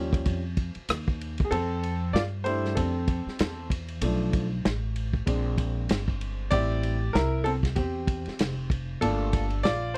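A polished, present upright piano solo opens this smooth, relaxed jazz-hop excerpt at 96 BPM in F major, tuned slightly low to A4 = 438 Hz, over a woody pizzicato upright bass with steel strings and a muffled, lo-fi vintage drum kit of tight kick, medium-tuned snare, rim click, hi-hat and dark ride cymbal, swinging its 16ths through chords such as Eb9, F69, Bm7b5 and Gm9, with the kick dropping out from 1.5 to 2.8 seconds, all captured in a dry, close 1970s-style studio sound.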